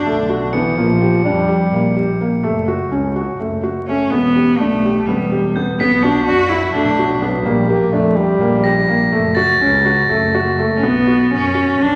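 Moving in a straight, uneven 7/8, this restless, shimmering chamber excerpt sets a felt-muted upright piano's soft, intimate arpeggios, with audible action noise, over a boxy bowed double bass, beneath a rich, close cello melody sung with vibrato, while a mellow French horn adds a gentle second line from 0.1 and 7.2 seconds and crotales struck with plastic mallets ring bell-like up high, set inside a wet scoring-stage reverb with vinyl crackle.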